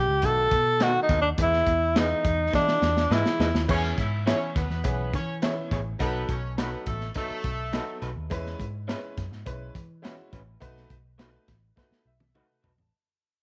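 Uptempo 1960s-style soul in E major at 104 BPM, this danceable, joyful passage is cut from a longer piece and moves through B7, Emaj7 and E6 chords over a straight 4/4 groove. A breathy, whispered tenor saxophone opens up front with a solo full of vibrato and scooped notes, played in an intimate jazz style until 3.7 seconds. Beneath it, a crunchy breakbeat drum kit sounds gritty and saturated with a tight kick and dark cymbals, adding fills near 2.5 and 11.8 seconds, while a foam-muted, round electric bass holds the low end. A bright upright piano with audible action noise and a slightly detuned, woody character provides accompaniment and a closing fill, and an electric guitar through a small old amp adds lo-fi, slightly broken-up stabs in the background. When the saxophone stops, a distant horn section with light vibrato and slapback echo carries a second line, and the whole passage fades out under light reverb.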